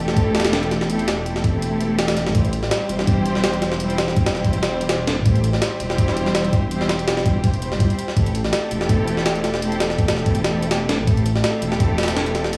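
A nostalgic, dark drum and bass excerpt in jungle style at 165 BPM in A minor, resting on a single Am7 chord throughout its 12.6 seconds. A bowed string section holds sustained chords with soft attack, vibrato and expressive portamento, over a deep, rumbling detuned saw bass whose beating tone sits low and dark. Entering at 0.1 seconds, the gritty, pitched-up sampler kit sits up front with a thumpy kick, high-tuned snare and hi-hat in a small room ambience, all carried in stone room reverb as if played on a big sound system in a bare room.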